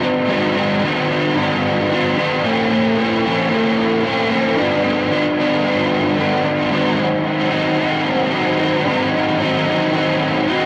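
A picked, overdriven electric guitar plays alone, double-tracked and up front with analog chorus, moving from Ab7 through Bbm and back in a dreamy, blissful rock passage in straight 4/4 that shifts to a new section at 6.7 seconds, all set in light reverb as a home cassette recording cut from a longer piece.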